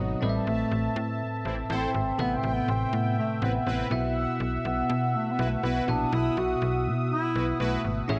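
A straight 4/4 pulse at 122 BPM drives this dramatic, urgent pop fragment, cut from a longer piece and tuned slightly sharp to A4 = 441 Hz. A mellow bass clarinet carries the melody as a solo from the start, its jazz-style line shaded with vibrato and sounding distant and roomy through a digital delay. Beneath it, a bell-like tine electric piano supplies clean, bright accompaniment, while a slap-like FM bass sits up front with a snappy, metallic attack that then decays. A brassy analog pad holds sustained chords high above, evolving and detuned with a soft-attack filter swell and chorus, and from 1.4 s an analog synth brass adds bold, fat, warbling stabs with a vintage sawtooth edge and filter sweep. The harmony moves from Amadd9 to Bsus4 at 3.9 s, all set in a light reverb.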